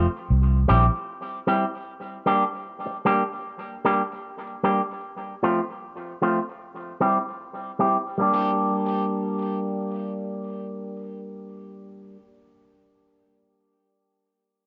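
An up-front, twangy electric guitar with an envelope filter carries a filter sweep through the first 8.2 seconds of this hypnotic, deep reggae excerpt at 76 BPM in G dorian, moving over C, Gm and F with low-pass filtering and tape echo, while a dark, round, foam-muted fingered bass sounds only until 0.9 seconds, all set in a moderate spring reverb with a dusky, rolled-off top.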